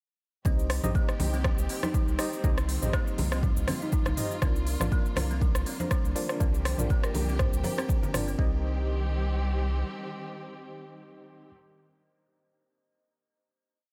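Driving and spiritual, this short afro house piece at 121 BPM in C minor opens straight into a drop, with an overdriven electronic kick pounding four-on-the-floor up front and a deep house kit of smooth hats, cabasa, rim and low tom riding beside soft, ringing congas in the background, while a round analog bass rolls out a dotted rhythm under sidechain pumping as the harmony moves from Cm to Bb. Buzzing, woody kalimba arpeggios and worn, slightly out-of-tune tine electric piano stabs with tremolo both trail dub echo over a bowed string pad rich in vibrato and portamento, and a hard-mallet marimba with 12-bit grit slips in briefly from 5.8 seconds. At 8.4 seconds the groove falls away, and the bass lingers briefly as the strings and electric piano hold a final Cm chord until 11.5 seconds in studio reverb.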